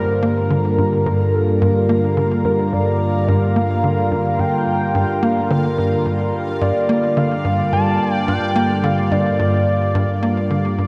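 A bright, resonant pad sweeps up front through this cosmic, hypnotic excerpt of sequencer-driven ambient space music, holding sustained chords over a punchy, nasal sequencer bass riff with 12-bit sampler grit, a warbling analog drone, and a dark, shimmering pulse-width lead melody with vibrato, while a faint bubbling stepped-filter texture enters at 0.4 seconds and a fade-out begins at 9.6 seconds, all set in a dreamy mix soaked in plate and shimmer reverb.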